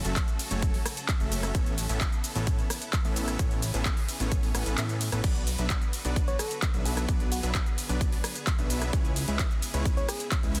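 A punchy, overdriven electronic kick sits up front in this euphoric, uplifting festival progressive house excerpt, dropping out briefly from 4.8 to 5.2 seconds, while a big-room drum kit with metallic hats, claps, rim clicks, shaker, ride and crash adds driven layers. Huge, detuned supersaw chords carry the riff with dub echo and sidechain pumping over a fat, saturated analog bass, and a distant symphonic string section holds sustained chords, roughened by vintage 12-bit sampler grit. At 6.3 seconds a round, gentle FM lead with a keys-like tone enters, shimmering with chorus, vibrato and echo, all within a dense, heavily limited modern master.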